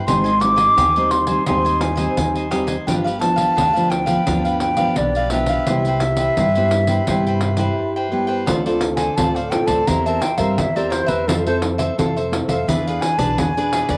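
This samba and choro piece, cut from a longer work, moves at a playful, lively 86 BPM in a straight 4/4 in C major. A breathy wooden flute carries the melody with vibrato and a crisp attack. Beneath it, a bright, picked cavaquinho and a full-bodied, fingerpicked nylon-string guitar with a deep classical tone share the accompaniment. A woody, thumpy pizzicato upright bass on gut strings and a jingly, vintage-sounding pandeiro complete the group. The cavaquinho, guitar and flute carry a cassette-tape coloring, and the whole home recording sits in a moderate spring reverb. After a break from 7.8 to 8.5 seconds, the flute takes a solo from 8.5 seconds to the end over Dm7, C7/E, Fmaj7 and E7, following an opening pass through Abmaj7, G7 and Cmaj7.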